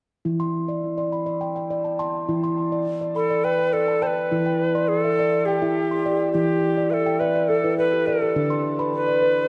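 World meditative music for tuned percussion and flute, this short cut from a longer piece has a hypnotic, meditative mood in 7/8 metre with a straight feel. A steel tongue drum opens the piece with ringing arpeggios struck with rubber mallets, its round, pure tone sitting up front and trailing into shimmer reverb and a diffuse ambient delay. At 3.2 seconds a Native American-style cedar flute enters with an airy, woody melody in a narrow, mid-register span, its soft attack and gentle vibrato captured close and bright over its own shimmer reverb. The tongue drum plays a fill from 6.8 seconds, and the harmony moves from a long-held E minor to a D7 colour at 8.4 seconds. The whole sits in a wet echo-chamber space with a dark, mellow production that keeps the upper frequencies soft.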